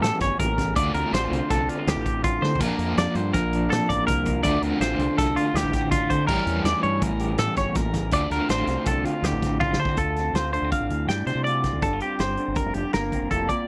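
A dry, close recording with a 1970s studio character frames this restless, wistful math rock and midwest emo fragment, cut from a longer piece and moving at 163 BPM in a straight 5/4 in D minor. A bright, twangy twelve-string electric guitar sits up front with clean, compressed arpeggios high in its range, over a lo-fi, slightly broken-up guitar through a small old amp that plays fingered accompaniment bathed in spring reverb. A double-tracked, overdriven semi-hollow guitar carries the riff with tremolo until it drops out at 10.0 seconds, as the music moves into a new section. Beneath them, a growling fingered bass, round and punchy with overdrive, anchors the low end. A loose indie kit with dark cymbals, a gritty, saturated tone and a rolled-off top drives the time, with fills at 2.4 seconds and again leading into the change. The harmony shifts between A7b9 and Dm7 before settling on Gm11 near the close.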